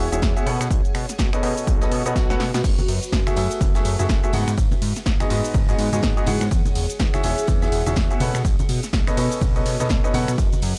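A bright, woody upright piano riff leads this bittersweet, soulful piano house excerpt, pumping against a punchy, up-front electronic kick and a fat, detuned analog bass with a moving filter sweep, all riding a swung 16th-note groove. A layered house kit adds a punchy snare, snaps, hats, shaker and cymbals, while a very quiet, distant brush kit, a faint electronic swell near 1.9 seconds, and soft-handed tambourine and congas from 2.6 seconds fill in the background. Beneath it all, a cloudy, evolving granular pad drifts with its own reverb, and the whole mix carries a cassette-tape, small-room character.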